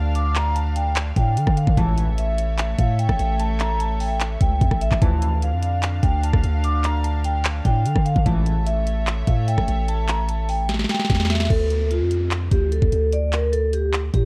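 A half-time trap groove at 148 BPM in 4/4 drives this melancholic, brooding hip hop fragment in D harmonic minor, cut from a longer piece. An electronic trap kit sits up front with a knocking kick, sharp snare, bright hi-hats, handclaps, rim clicks and crash cymbal. Beside it is a deep, sine-toned 808-style bass whose fast attack gives way to long, decaying notes. Over this, a vibraphone played with medium mallets carries the melody in a metallic, ringing voice with slow motor vibrato, softened by a low-pass filter, while a distant studio string section holds pure, bowed sul tasto chords that float until 11.5 seconds. Brief retro, glossy stabs from a chorused polysynth, blending pulse, sawtooth and triangle waves with a sub octave and filter sweep, mark the shifts between Dm and A and are trailed by digital delay. A drum fill leads into a closing passage where an electronic downlifter sits in the background, and the dry mix carries the character of worn cassette tape, with warbly pitch drift.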